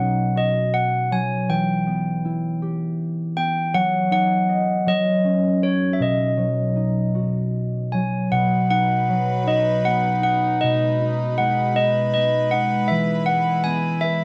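Rocking gently in 6/8 at about 53 dotted-quarter beats per minute with a loose, rubato feel, this short lullaby excerpt for children sits in B major and feels innocent and sleepy. Handbells carry the melody from the start, their clear, ringing tone placed up front with a boxy small-room character. Beneath them a concert harp supplies thumb-plucked accompaniment, its warm, acoustic sound also close and present. At 8.3 seconds, as the opening phrase repeats, a rich chamber string section enters with sustained bowed chords, softer in the mix and lending a reedy, gut-string, period-style color. The harmony drifts from B through E minor and back, later touching G# minor before settling on E, and the whole is framed by light reverb in a dry, close recording with a 1970s studio feel.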